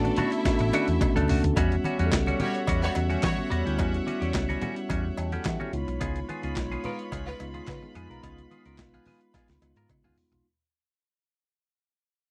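Disco at 108 BPM with a glamorous, driving mood, this short clip fades out from 1.6 seconds while a gritty, pitched-down sampler-style drum kit with a thumpy kick, high-tuned snare, handclaps, hi-hat and toms plays fills at 0.5 and 9.3 seconds, under a dark, round fingered bass, soft low-tuned congas and a metallic cowbell set in the background. A mellow tine electric piano sits up front and takes a fill at 4.9 seconds, beside a clean, picked semi-hollow guitar treated with phaser, while a reedy, gut-toned string section holds sustained chords and a clear, lush string section with vibrato adds a distant second line. The dry, close 1970s-style sound carries chords moving from Bm7 to Em69 and C#7.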